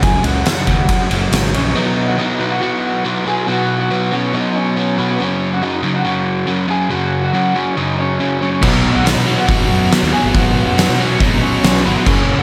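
Set in a big arena sound with lush hall reverb, this short cut of quiet-loud alternative rock feels bittersweet and restless at 140 BPM in a straight 4/4, moving between F#5 and B chords in B major. It opens with a clean electric guitar solo from a small old amp, twangy and slightly broken up, carrying the melody with subtle chorus and slapback echo. Beneath it, a crunchy, double-tracked overdriven guitar sits up front with a picked riff. The fuzz fingered electric bass and an oversized low-tuned drum kit, with its fat snare, punchy kick and dark cymbals in a pumping stone room, drop away at about 1.7 seconds and leave the two guitars. At 8.6 seconds the bass and drums return, and a thick, bright fuzz guitar joins with its own distorted riff.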